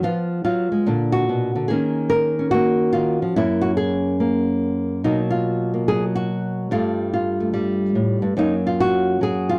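Playful and sophisticated, this brief solo jazz excerpt in F# major swings at 144 BPM in 4/4 as a small, dark-toned fingerpicked nylon-string guitar sits up front in a moderate studio reverb, moving through rich harmony from Fdim and D#m11 to F#9 before settling on F#maj9 at 8.4 seconds.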